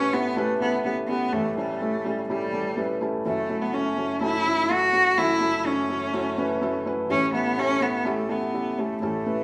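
Set in a large studio with a moderate reverb and the feel of a band playing together in one room, this short pop clip has a warm, uplifting mood in a straight four. A bowed cello carries the melody up front with a nasal, boxy, focused tone and vibrato, while a felt-muted upright piano sits close beside it in a soft, mellow, intimate accompaniment. The harmony moves from A7 to F#m7 at 3.3 seconds and back to A7 at 7.1 seconds.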